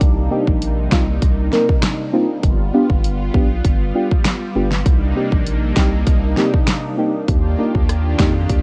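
A sultry, tough dancehall excerpt opens with an up-front pop drum kit of punchy kick, fat snare, rim click, hi-hat and finger snaps, over a thick, saturated sub bass and a smooth, detuned analog pad carrying chorused, sidechain-pumped chords. At 0.3 s a dark, mellow chord stab joins with decaying filter-plucked notes colored by chorus, phaser and pumping, as the harmony moves through Cm7, G7 and Ebmaj7. The whole sound sits in a worn, warbling cassette-tape ambience with drifting pitch.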